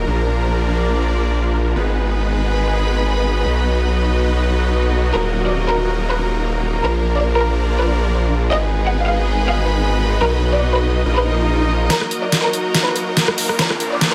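This aggressive, heavy half-time dubstep excerpt at 142 BPM opens on a compressed, formant-filtered wobble bass with chorus and overdrive, under huge detuned supersaw chords and a rich, lush symphonic string section in Eb harmonic minor. A clear studio violin section carries the melody from 5.1 s through dub echo, and a background electronic swell and riser rises from 11.3 s. At 11.9 s the bass stops and an overdriven, up-front drum kit with a deep snare, bright hats and rim clicks enters with a fill for the build-up, all in a light digital ambience.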